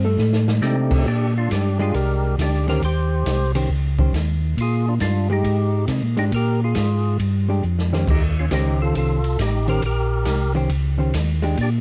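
Heard through the small-room ambience of a home cassette recording, this swinging, soulful soul jazz organ trio excerpt opens with a dark, clean hollow-body electric guitar taking a brief solo before settling into compressed accompaniment, while a mellow, round tonewheel organ carries the bass up front with key click and slow rotary speaker, an acoustic drum kit with dark cymbals and a boomy kick adds fills at 0.2 and 7.6 seconds, and a fat, lightly overdriven percussive organ with third harmonic percussion and vibrato sings the melody.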